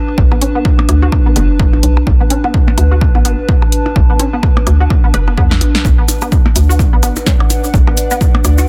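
Quirky and clinical, this minimal techno excerpt rides a punchy, up-front electronic kick and a hollow, bouncy FM bass that pumps with the sidechain, while a techno kit adds a punchy snare and warm, tape-warm hi-hats under overdriven percussion blips with delay. A squelchy, nasal blip pluck riff carries a filter sweep through the whole clip, echoing through digital delay over a mellow, warbling lo-fi pad that breathes with phaser and chorus. After a drum fill at 5.5 seconds, a grainy, bright cabasa enters and a very quiet pulsing gated texture joins at 6.1 seconds, all within a dry, dense, heavily limited mix.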